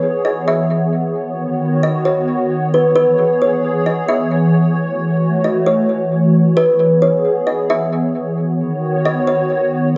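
A woody, ringing kalimba carries the melody from 0.0 to 9.9 seconds, its thumb-plucked notes sitting up front and trailing off into tape echo with an airy lift. Beneath it, a hollow, flute-like pad holds sustained chords with a slow attack and long release, its detuned, dark tone thickened by ensemble chorus. The harmony drifts through C#m7, Badd9 and F#m7, giving this ethereal hip hop passage a spacious, unhurried half-time feel. A wet spring reverb and heavy echo wash over the mix, so the two parts seem to float in a roomy haze. The clip is cut from a longer piece and stays within a single section for its full 10.0 seconds.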